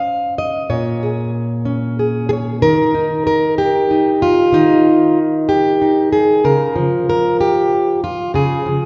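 A wet concert-hall reverb with a long 1.8-second tail surrounds this short, haunting folk passage, cut from a longer piece. A single fingerpicked, plugged-in steel-string jumbo acoustic guitar sits up front with a full-bodied tone, moving through Dbmaj7 and Bbm7 in Bb dorian at 63 BPM in a straight 6/8. After 2.6 seconds the harmony drops away into an unaccompanied stretch before settling on Bbm7/Db at 6.5 seconds, keeping the mood intimate across its range from Bb2 to F5.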